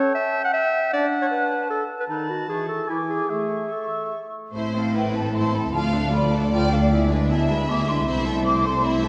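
In a quick, rubato 3/4 at 154 BPM, this spirited, lively classical-period orchestral fragment opens in A major with an airy, distant flute ensemble, a punchy, up-front clarinet and a smooth-topped oboe over dark, roomy French horn chords, then near 4.6 s turns to A minor as a lush violin section, an intense violin melody set in the background, a distant viola accompaniment and bowed cellos and double basses join the continuing flutes and horns, the whole bathed in a wet concert hall.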